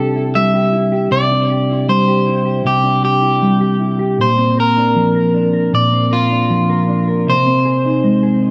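Ethereal and floating, this 8.5-second dream pop excerpt in C mixolydian drifts at 78 BPM as a slightly broken-up, scooped electric guitar picks an up-front melody with digital delay over a dark, clean, compressed electric guitar whose fingered arpeggios carry subtle chorus and delay, moving from Cadd9 to Bbadd9 at 4.2 seconds and Ab/C at 7.3 seconds, all bathed in a long plate reverb and dark production.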